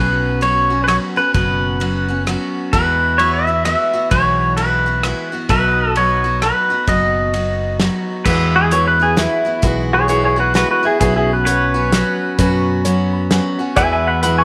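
Honky-tonk and classic country in a lilting, swung 3/4 at 130 BPM in E major, this heartfelt, down-home excerpt puts a twangy, up-front pedal steel guitar on the melody over a bright, full-bodied picked acoustic guitar and a punchy fingered electric bass, with a natural country drum kit of dark cymbals and rim clicks entering at 0.4 seconds. A second pedal steel sits in the background with sustained chords from 3.2 seconds, and at 8.3 seconds the lead steel takes a solo while a concert grand piano with audible action noise joins, adding a brief fill around 12.9 seconds. The chords move between Bsus2, Eadd9 and B in a small room touched by moderate spring reverb.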